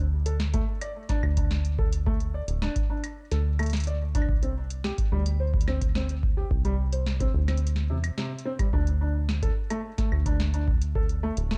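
A rubbery, saturated acid bass sits up front from the start of this melancholic, eerie IDM excerpt at 108 BPM, joined at 0.3 seconds by muted felt upright piano arpeggios carried on dub echo and a booming analog drum machine with claves, metallic hi-hat and tonal snare, while a deep electronic kick enters at 0.5 seconds, all in a dark, dry production over D5 chords that briefly give way to a chordless stretch before returning.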